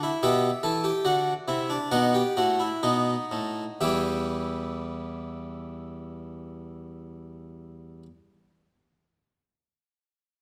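Contemplative yet driving, this short cut from a longer baroque-style three-part fugue presents a solo harpsichord, airy and brilliant in the French style, with plucked octave strings sitting up front across a range from E2 to G5. The opening passage slows down through its first 3.8 seconds as the harmony moves from E minor over B to a dominant seventh, then a new section begins on E minor. Close, detailed miking captures the instrument inside a moderate recital-hall reverb.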